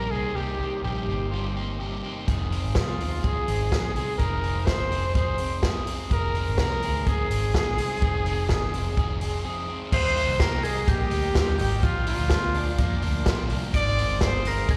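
A clear, close-miked trumpet carries the melody up front in this youthful, breezy stretch of jangly indie pop, its light vibrato touched by slapback echo and digital delay. Beneath it, a crunchy overdriven guitar picks out accompaniment while a twangy, slightly broken-up guitar through a small old amp plays lo-fi arpeggios in the background, both with slapback echo. A dark, foam-muted electric bass gives a round, punchy low end, and a vintage drum kit with a punchy kick, medium-tuned snare, hi-hat, ride and crash enters at 2.3 seconds, sitting up front with a rolled-off top. After a brief break, the music moves at 9.9 seconds into a new section where a sparkling, bell-like glockenspiel adds a high second line and a very quiet studio string section holds reedy, gut-string chords. The whole piece sounds like a live gig heard through the venue's PA, blending small room ambience with recital hall reverb, and it is cut from a longer piece.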